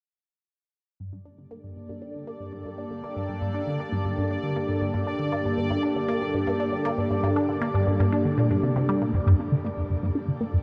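This expansive, hypnotic slice of sequencer-driven space music in G minor at 118 BPM fades in at 1.0 s on a Gmadd9 chord. A squelchy, juicy blip pluck riff with phaser and tape echo sits up front beside a bright, evolving pad of sustained chords coloured by chorus and shimmer reverb, while a faint bubbling texture of random filter steps hovers on a high D5 until 9.1 s. From there the pluck takes a filter sweep through to 10.6 s, the whole mix bathed in a huge, wet ambient reverb.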